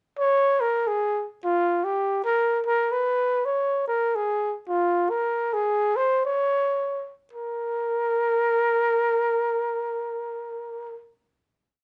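A breathy trumpet enters at 0.2 seconds and plays alone in free time, a smoky, cool jazz piece built on short, hook-like motifs that sit between F4 and Db5. Close-miked and up front, the tone is dark and whispered, with vibrato and a soft attack, set in a moderate studio reverb. The phrases slow from 3.8 seconds before a final note is held from 7.3 seconds until the horn stops at 11.0 seconds.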